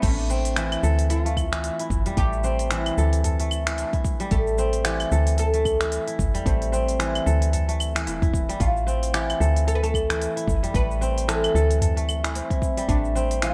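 Organic downtempo in A minor at 112 BPM with a swung sixteenth-note feel, earthy and mystical, this excerpt moves from Am7 to a third-less D7 at 8.6 seconds under a light reverb and a bright 1980s-style digital sheen. A plectrum-plucked, fretless oud with double strings carries the melody through a delay, while an up-front, fingerpicked kora rings out crisp, mellow arpeggios through digital delay, and a round, dark FM bass with a fast, decaying attack anchors the low end. A deep, layered electronic kick and a smooth, tape-tinged electronic kit of cabasa, claves, crash, finger snaps and hi-hat in gated reverb drive the groove, joined from 1.9 to 11.9 seconds by a small, close, very quiet udu.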